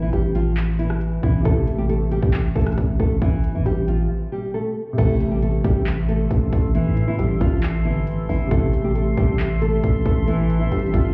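Eerie, menacing half-time trap hip hop at 136 BPM in A minor, built on a small, fingerpicked nylon-string guitar melody with digital delay, a growling, buzzy 808-style bass and an up-front trap kit with a hard-clipped kick, crisp hi-hats, handclaps, rim clicks and crash. A dark, worn baby grand piano with audible action noise enters in the background at 1.4 seconds, and after a break at 4.1 seconds a deep, detuned ambient pad with chorus and slow-attack sustained chords joins at 5.8 seconds. The whole mix sounds muffled as if heard through a wall, bathed in club reverb, and the passage is cut from a longer piece.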